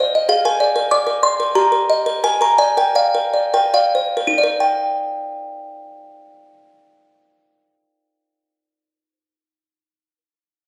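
A triple metre sets the pace of this short classical lullaby in Eb major, its tempo drifting between 66 and 100 BPM and slowing down over the first 4.6 seconds. A solo music box carries everything, its delicate, tinkling plucked tones sitting up front with a bright, small-box character that is slightly out of tune, ranging from Eb4 up to D6. The harmony moves gently from a Bb7 over Ab through Eb over G and Bb before settling on Eb at 4.6 seconds, where a second section begins. A moderate recital hall reverb surrounds the music box, which falls silent at 8.4 seconds, and the excerpt closes at 10.0 seconds. Captured on a phone in the room, with added studio reverb, this dreamy, tender passage is cut from a longer piece.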